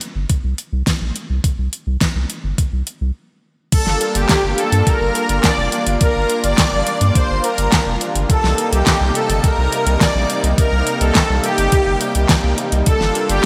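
Driving and cinematic, this synthwave excerpt in G minor moves at 105 BPM in a straight 4/4, opening with a pop drum kit of fat snare, metallic hi-hats, handclaps and crash, an overdriven, thumpy electronic kick and a round, deep analog bass that sits up front. After a brief stop from 3.2 to 3.7 seconds, a smooth, detuned supersaw melody with phaser, delay and shimmer reverb enters alongside a vintage string machine line in the background and a lush, thick unison pad whose chords pump against the kick. The chords move from Gm7 to Cm7 at 8.3 seconds and back, all set in a bright 1980s-style digital production with a lush hall reverb.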